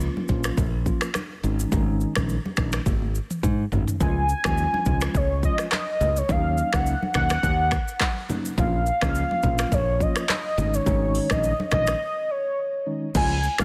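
Afrobeats at 105 BPM with a romantic, breezy mood, where a mellow tine electric piano and bright fingered bass play over a produced afro-pop kit with deep kick, metallic hats, snaps and handclaps. Very quiet live-room congas join at 0.2 seconds, and a velvety, detuned sawtooth synth lead with chorus, vibrato and tape echo carries the melody from 4.0 seconds, after a drum fill and before a break at 12.0 seconds, in this excerpt cut from a longer piece.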